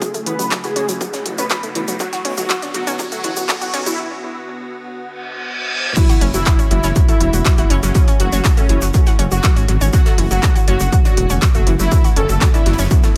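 Melodic techno at 121 BPM in F# minor, melancholic and dramatic, where a heavy, up-front electronic kick, a techno kit of smooth hats, claps and crash with dub echo, a very quiet gated 80s kit, a grainy egg shaker and a dark, rumbling detuned saw bass with sidechain pumping drive a fat analog lead with tape echo, a nasal arpeggiated analog pluck and a morphing wavetable pad in the background, as a filter-swept build-up with a riser and reverse cymbal breaks at 4.0 s before the drop and impact at 6.0 s, where an intimate bowed chamber violin section joins as a second line.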